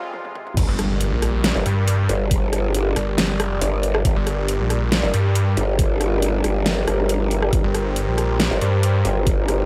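Heavy wobble dubstep in G minor at 138 BPM with a half-time feel, this aggressive cut opens on a brief Fm break where a lush, detuned supersaw pad with sidechain pumping and a low-pass filter sits under a drum fill from the dubstep kit, whose huge snare, bright hats, rim clicks, toms and crash carry a tape-tinged small-room sound. At 0.6 seconds the drop lands on Gm with a very quiet impact, an overdriven knocking electronic kick and a growling, wobbling growl bass shaped by a formant filter, chorus and saturation, joined at 0.7 seconds by a snarling distorted saw bass with a moving notch, both basses sitting up front and compressed. The mix carries light reverb and a high-pass filter.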